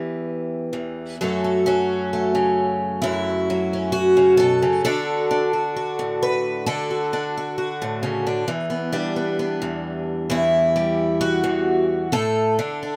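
Melancholic and intimate, this fragment of a folk piece features a single picked twelve-string acoustic guitar played solo, moving in a loose, rubato 4/4 around 66 BPM across a range from E2 to E5. The up-front, octave-doubled strings have a shimmering, slightly boxy parlour character, with fresh strings and audible finger squeak, set in light reverb. The harmony drifts from Em through F#m and D to Emadd9, coming to rest on Asus4 at 12.1 seconds.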